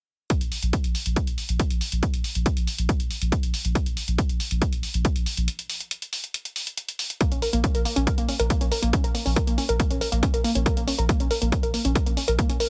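Driving peak-time techno at 139 BPM in Bb minor, this dark, hypnotic passage is cut from a longer piece and runs on a straight 4/4 pulse. A heavy, layered electronic kick sits up front with overdrive, while an analog-sounding electronic hi-hat, re-recorded in a small room, ticks beneath it. A deep, thick sine sub bass holds Bb1 with tube saturation, low-pass filtering and sidechain pumping, giving a sustained floor. The opening stays chordless, a break arrives at 5.5 seconds, and at 7.2 seconds the harmony settles onto Bb minor as a warbling, nasal, lo-fi pluck enters up front between Bb3 and Bb4. That detuned triangle-and-sawtooth riff carries a noise layer, a filter sweep, chorus, sidechain pumping and dub echo. The whole mix sits in a digital ambience with a heavily compressed, radio-like sound.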